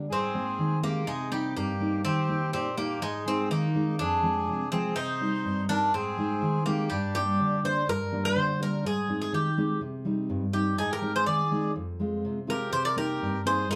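Greek folk music for a bouzouki band, dramatic and tense, moving at 124 BPM in a straight 2/4. The Greek bouzouki carries the melody up front, its picked double strings sounding metallic and warm, some of them octave-doubled. Beneath it, a fingerpicked steel-string jumbo acoustic guitar supplies a dark, full-bodied accompaniment, also placed up front. A reedy, airy accordion plays a second line, dropping out at 7.6 seconds and returning at 10.8 seconds. The harmony circles through chords such as Abadd9, Cm7, Eb, Fm and Gm, and the passage shifts into a new section at 7.9 seconds. A moderate studio reverb and a dark, warm production give this fragment of a longer piece a close, brooding atmosphere.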